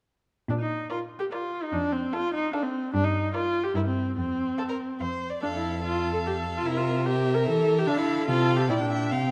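Viola and cello open this spirited, graceful string quartet passage together at 0.5 s, the viola's rich, focused tone carrying the accompaniment while the cello supplies a resonant bass line, both bowed with vibrato. At 0.9 s the two violins join: one sings the melody high in its range with an intense, smooth-topped sound, and the other weaves a second line beneath it, its focused tone set a little further back. The movement is a quick classical-period piece in triple metre with a straight feel, and its harmony turns through a lively progression that settles toward a new tonal centre midway. Each instrument is a single bowed player, and the inner and lower strings sit forward in the balance beneath the clear violins. A moderate recital hall reverb and a dark, warm production give the ensemble a cohesive, rounded glow. The passage is cut from a longer piece, with all four parts playing through to 9.3 s.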